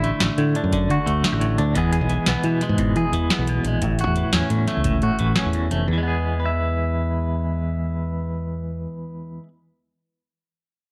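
Light reverb gives this short cut from a longer piece a gentle sense of space, and its warm, danceable mood rests on a steady, straight 12/8 highlife guitar-band groove. A clean electric guitar sits up front, bright, twangy and compressed, its picked accompaniment shimmering with tremolo across a broad range. Underneath, a fingered electric bass supplies a dark, round, direct low end. A booming analog drum machine drives the opening with a deep kick, a tonal snare and metallic hi-hats, then drops out at 5.8 seconds as the music moves into a new section. The harmony travels from D to E and on to A6 before settling back on E, with the bass stopping at 8.9 seconds and the guitar ringing on alone until 9.5 seconds.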